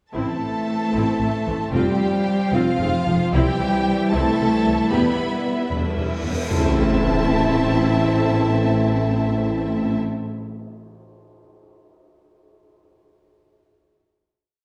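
A chamber violin section carries the melody with a smooth, vibrato-rich top line in this heroic, relentless piece of epic orchestral film score, set in 6/8. Lush symphonic violins double the tune at the octave and in thirds, cellos double it at the octave with a soft attack, and a very quiet, vintage-toned French horn section also shadows it at the octave. Violas add a driving ostinato and sustained chords, while woody double basses play a driving bass ostinato reinforced by a mellow, distant tuba, and a rich string section and a very quiet, loose trombone section hold sustained chords beneath. Dark cymbal swells and tam-tam strokes arrive at 3.3 seconds, and a huge cymbal swell at 6.2 seconds builds into a low sub impact as the band accents the final chord at 6.5 seconds. The whole ensemble sits in the wet, roomy reverb of a church or concert hall, giving the strings and brass a grand, enveloping sound.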